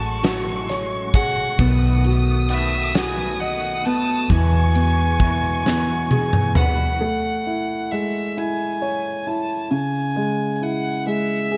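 This tender, romantic pop ballad in a slow 6/8, pulsing at 44 BPM in dotted quarters, opens with nearly the full band together: a nasal, earthy solo violin carries the melody with light vibrato, while a lush studio violin section plays a higher second line, both touched by tape echo. A concert grand piano with deep bass sits up front as the accompaniment, and a slightly broken-up, twangy electric guitar plays arpeggios in the background through an ensemble chorus. Underneath, a dark, foam-muted fingered electric bass gives a round, punchy low end, and a huge arena drum kit enters at 0.2 seconds with a fat snare, punchy kick, bright ride cymbal and toms, rolling into a drum fill before the band drops away at 7.0 seconds. From there only the solo violin and piano continue, moving through Amaj7 and C#m until the cut at 11.6 seconds, after the opening pass through F#madd9/A, B7 and Eadd9. Light reverb and a small room ambience frame the performance.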